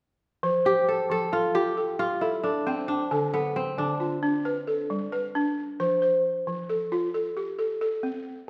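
A reverberant concert-hall sound surrounds this flowing, warm traditional piece in 12/8 at 89 BPM in F lydian, where a woody, buzzing balafon played with rubber mallets sits up front with arpeggios from 0.4 to 8.5 seconds, while a crisp, ringing, fingerpicked kora carries the melody from 0.7 until it stops at 5.5 seconds, over chords moving from F through Dm and G back to F.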